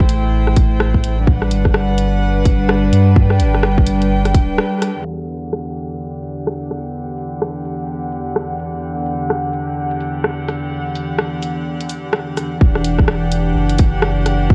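Rainy and ghostly, this future garage excerpt moves at 127 BPM in E minor, its swung sixteenths giving the groove a loose, shuffling lilt. A rich chamber string section holds sustained, bowed chords throughout, sounding pure and floating with a soft attack and a close, sul tasto quality, pumping under sidechain as the harmony passes from Am7 to Gmaj7 and later settles on Em9. A round, sine-like sub bass and a tight, tape-warmed electronic kick sit up front together, the kick dropping out at 4.5 seconds and the bass at 4.6, where a band accent and a brief break land, and both return at 12.6 seconds. In between, a filter sweep runs across the middle stretch while the garage kit's cabasa, hi-hat and rim click keep ticking in small room ambience. The whole track carries a light reverb, a cassette-tape haze and a low-pass filter that soften its edges into a misty blur.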